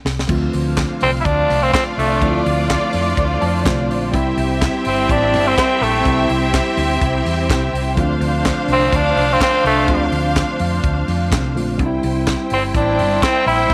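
Sultry and danceable, this disco excerpt in D minor moves at 125 BPM with a 16th-note swing, built on a round, punchy hollow-body fingered electric bass and a tight funk drum kit whose high-tuned snare, handclaps, hi-hat, crash and tight kick sound dry and polished after an opening drum fill. A worn, slightly out-of-tune tine electric piano adds accompaniment and a short fill at 3.2 seconds, while a lush bowed string section holds sustained chords up front and a second string line with a smooth top sits in the background, all over a Dm7 to C progression in light studio reverb. Entering at 1.0 seconds, a breathy, raspy tenor saxophone carries the melody up front with a gritty vintage edge.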